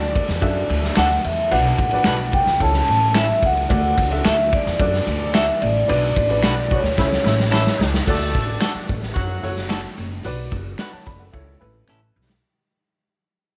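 A ringing, airy vibraphone played with soft mallets carries the melody until 7.8 seconds in this danceable, uptempo 1960s-style soul cut at 110 BPM in D major, backed by a growly, woody pizzicato upright bass, a gritty, punchy garage drum kit up front with drum fills, an intimate, slightly detuned upright piano in the background, picked electric guitar stabs at the edge of break-up, very quiet finger snaps, and a mellow, distant horn section with slapback echo entering at 6.7 seconds, all in a small room with light reverb before the fade-out from 8.1 seconds.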